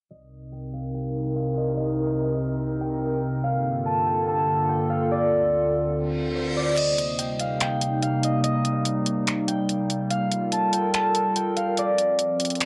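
This atmospheric cloud-rap excerpt moves at 144 BPM in 4/4 with a half-time feel, its mood spacious and hazy, like a home recording on cassette with light reverb. A fingerpicked concert harp carries the melody between C5 and A5, its acoustic, ringing tone softened by a low-pass filter, cassette tape and analog delay. Beneath it, from 0.4 seconds, a warbling, detuned pad of square and triangle waves with ring modulation holds sustained chords from C2 to Bb4, dark and nostalgic, with a slow attack, long release, chorus and built-in reverb. The first half unfolds under a filter sweep over a Cm7, Gm9 and Dm7 progression, and a brief electronic reverse cymbal at 6.1 seconds leads into the second half. At 6.8 seconds a smooth, produced R&B drum kit arrives up front with crash cymbal, finger snaps and warm hi-hats, its kick muted and its sound tinged by cassette tape, while the same chord cycle repeats beneath it.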